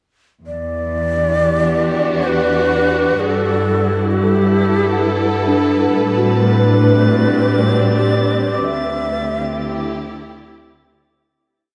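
A slow, straight 3/4 pulse at 66 BPM carries this spacious, melancholic ambient piece in E minor, where a lush bowed string section holds slowly shifting chords up front over the earthy, sustained root bass of a chamber cello section. A breathy, mellow shakuhachi with vibrato and a tongued chiff shapes arching motifs through tape echo, while muted, felt-like synth keys enter at 4.2 seconds with chorused, decaying arpeggios in slow loops of unequal length, and a faint glassy harmonics texture drifts in at 6.2 seconds around a held high note. A huge, wet reverb and dark production surround the ensemble as the piece fades out from 7.7 seconds.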